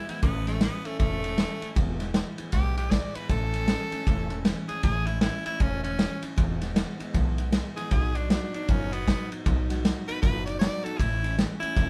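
Upbeat and rollicking, this swinging rockabilly excerpt is played by a band live in one room, with light reverb. A raspy tenor saxophone carries the melody as a solo throughout, its edgy, gritty tone delivered forcefully with vibrato and a pop-style punch. A picked jumbo steel-string acoustic guitar supplies full-bodied accompaniment, while a woody pizzicato upright bass holds down the low end. A vintage drum kit sits up front with a punchy kick, a medium-tuned snare and dark ride cymbal, its rolled-off top and pumping small-room sound adding to the vintage character. The harmony moves between A, E and B, settling back on A at 11.0 seconds.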